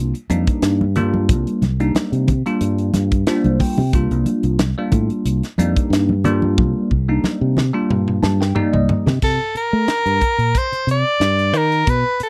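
Funky and slick, this electric jazz fusion excerpt moves at 91 BPM in 4/4 with a light sixteenth-note swing in C dorian, opening on a Cm9 chord as a bell-like tine electric piano with phaser comps up front, taking fills around 2.9 and 7.9 seconds, beside a round, punchy fingered bass, a crisp, polished drum kit with a high-tuned snare and tight kick, and soft-handed congas sitting in the background. After a drum fill, the piano and congas stop at 9.2 seconds and a breathy soprano saxophone with vibrato steps forward as the solo voice. The sound is dry and close, with a 1970s studio character.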